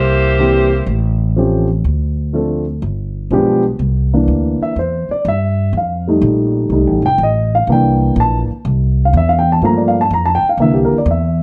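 Heard in a moderately reverberant large studio with a rolled-off top end, this brassy, swinging big band jazz fragment in C mixolydian moves at 124 BPM in 4/4 with a swing feel, as a warm, vintage saxophone section with vibrato and plate reverb states the melody until 0.9 s over woody pizzicato upright bass, while a dark, mellow upright piano enters at 0.4 s and takes a solo from 3.8 s to the end.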